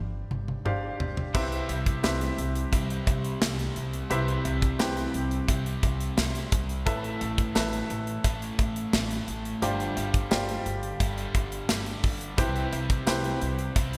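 1980s-style pop at 87 BPM in C major, nostalgic and glossy, opening with a drum fill on an up-front modern kit with punchy kick and gated reverb over clear piano and woody pizzicato upright bass, before a crunchy, double-tracked overdriven guitar with subtle chorus and a very quiet, saturated cowbell join at 1.3 seconds as the chords move from G7sus4 through Cmaj7 and Asus2, all bathed in a lush hall reverb and bright digital sheen in this excerpt from a longer piece.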